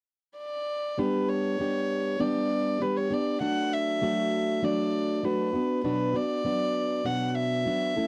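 A bowed violin opens alone at 0.4 seconds, its tone soft in attack and airy, floating up front in a heartfelt, easy-going pop excerpt. At 1.0 seconds a fingerpicked, plugged-in jumbo steel-string acoustic guitar joins with a dark, full-bodied accompaniment, also placed close and forward. The violin carries the melody in a narrow upper-middle range with a pure yet slightly boxy quality, while the guitar spans a deeper register beneath it. The harmony moves from G to D over F# and then to B minor in a straight, unhurried 4/4. The sound is dry and intimate, like a 1970s studio recording, with light reverb and both parts running on until the cut at 8.1 seconds.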